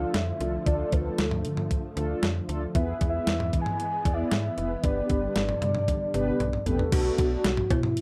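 Synth-pop at 115 BPM in a straight 4/4, this short cut from a longer piece feels melancholic yet driving, moving through Dm, E and G before settling on Bm7 at 6.9 seconds. A soft, octave-layered synth lead carries the melody from E4 to G#5, its full, round tone built from triangle, sawtooth and sine with a sub octave, dressed in chorus, tremolo and vibrato. Beneath it, a mellow synth brass plays accompaniment with a brassy, detuned sawtooth body and chorus, while a silky string machine holds sustained chords in the background with a slow attack and ensemble chorus, ending at 6.9 seconds. A slap-like FM bass adds snappy, metallic attacks that then decay, and a clean 12-bit drum machine sits up front with a thumpy kick, medium-tuned snare, hi-hat, cowbell, crash and toms. A drum fill from 5.9 to 6.9 seconds leads into the closing change, and moderate studio reverb gives the parts a shared room.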